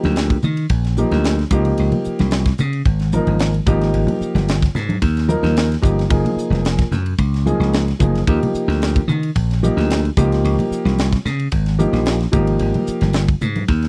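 A dry, close 1970s-style studio sound frames this soaring, bright electric jazz fusion excerpt at 111 BPM in a straight 4/4, where a punchy, up-front slap bass and a tight funk drum kit with a high-tuned snare, tight kick, hi-hat and ride cymbal drive beneath a dark, boxy concert grand piano with long sustain voicing lush chords such as Ebmaj9, Dbmaj9, Absus2 and Gbmaj9, while damped, thin-skinned congas played with soft hands sit in the background.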